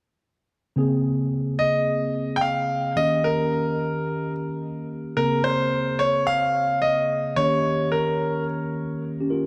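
A bright, brilliant concert grand piano carries the melody from 1.6 s to 8.4 s, sitting up front with a polished, present tone and deep bass. Beneath it, a worn, slightly out-of-tune tine electric piano plays the accompaniment from 0.8 s, its clean, direct sound thickened by a lush chorus. This punchy, confident R&B piece moves at 109 BPM in 4/4 with a swung sixteenth-note feel, in B-flat dorian. The harmony alternates between Bbm9 and Eb7, and the cycle repeats when a second section begins at 5.2 s. A long plate reverb surrounds the mix, giving the production a dark, warm character.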